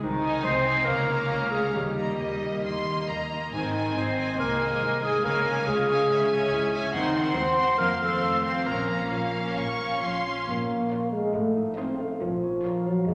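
Dramatic and restless, this orchestral excerpt unfolds with a free, rubato pulse, moving from major-key warmth into a darker minor cast around 6.9 seconds. A mellow, distant clarinet sits up front carrying a second line until 10.0 seconds, while a ringing concert harp spins fingerpicked arpeggios underneath. The violins lead the melody with a lush, expressive sound and a smooth top, joined by a second violin line and a bright viola section filling in the accompaniment. In the background, a clear, intense cello section and a rich double bass section anchor the bass with bowed tone, the cellos with light vibrato and the basses with a fuller vibrato. At 10.5 seconds a dark, roomy French horn section steps forward with sustained chords, deepening the tension as the harmony turns toward a minor resolution. The whole ensemble is bathed in a wet scoring-stage reverb that lends the strings a sweeping, spacious glow.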